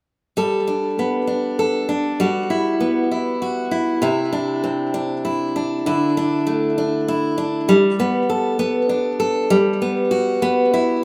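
A rough home-demo sound with wet studio reverb frames this swaying, romantic pop excerpt in 6/8 at 66 BPM in G major, where a solo picked steel-string acoustic guitar, warm and up front with an auditorium character and tape echo, moves through Gadd9, Emadd9/G, Cadd9 and Dsus2 before returning to Gadd9 at 7.7 seconds.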